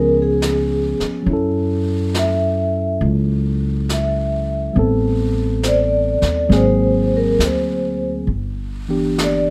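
This jazz ballad fragment feels intimate and smoky, moving at an unhurried pace with a gentle swing on the eighth notes. A vibraphone played with soft mallets carries the melody in a mellow, ringing voice, its medium motor vibrato adding a shimmer to the metallic tone. Beneath it, a clean tine electric piano sits up front with the accompaniment, while a pizzicato upright bass with gut strings provides a woody, thumpy foundation. A brushed jazz drum kit enters at 0.4 seconds, keeping a natural, acoustic pulse on snare and hi-hat at a low level behind the other parts. The harmony drifts through rich extended chords, from C#7 and F#m7 to Am9, G#9 and finally G6, all held in a light reverb.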